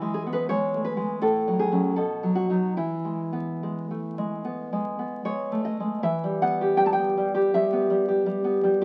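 Sunny and warm, this romantic solo classical guitar passage, cut from a longer piece, drifts in a free rubato as an up-front, full-bodied nylon-string guitar is fingerpicked with a deep classical tone before the harmony darkens to E minor at 6.0 seconds, all heard through moderate studio reverb and the crackle of a very old 78 rpm record.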